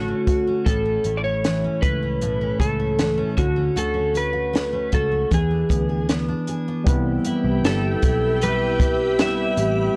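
A slightly broken-up electric slide guitar, played with fingerpicks and coated in analog chorus, carries the melody up front in this laid-back, nostalgic bedroom-pop excerpt at 78 BPM. A full-bodied jumbo acoustic guitar is picked beside it with audible finger squeak and a warbly pitch drift, while a dark, round, foam-muted electric bass with transformer saturation and a dry cocktail kit with a punchy kick, a high-tuned snare and 12-bit sampler grit keep a straight 4/4 over Dmaj7, A and E7. At 6.8 seconds a barky, overdriven tine electric piano joins, and at 6.9 seconds, as the harmony moves to Cmaj7, a lush, mellow string machine adds slow-attack sustained chords, all set in a small, gritty room.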